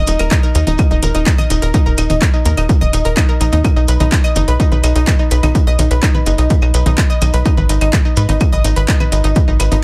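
Soaked in echo with light reverb and a digital ambience, this melancholic, driving melodic techno excerpt runs at 126 BPM in a straight 4/4, its chords moving from Eb5 to B at 3.6 seconds and Abm at 7.5 seconds. A punchy, tape-warm electronic kick sits up front beside a tight sawtooth-and-square sequencer bass with a moving notch and fast-decaying filter pluck that pumps under sidechain, while a detuned, round analog pluck spins bright arpeggios through chorus and analog delay. A layered, overdriven deep house kit of claves, congas, handclaps and metallic hi-hats adds reverb and pumping hats and percussion, with grainy, band-limited maracas echoing in the background.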